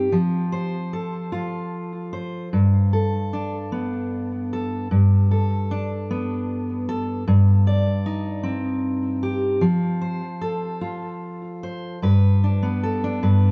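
A fingerpicked steel-string dreadnought guitar plays alone in this gentle, pastoral folk piece, moving in a loose, rubato 6/8 through F, Gadd9 and a darker Cmadd9/G chord. The fresh strings give a warm, full-bodied tone that sits up front, wrapped in a wet studio reverb that suggests a listener placed further back in the room. At 12.0 seconds the music turns to a new section on Gadd9 before the passage is cut off from the longer piece at 13.5 seconds.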